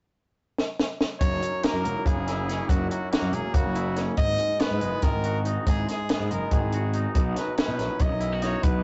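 Bright and playful, this math rock and midwest emo passage, cut from a longer piece, runs at 283 BPM in 7/8 and opens with a compact cocktail drum kit fill at 0.6 seconds, its high-tuned snare and punchy kick dry and up front. At 1.2 seconds the band arrives over F#7, G#m7 and Badd9: a solo trumpet sings a pop-style melody with vibrato, a clean, compressed, twangy electric guitar plays fingered accompaniment, an overdriven fuzz bass sits up front, and a thumb-plucked concert harp rings out arpeggios in the background. The rough rehearsal-room recording carries a moderate small-room reverb and a dull top end.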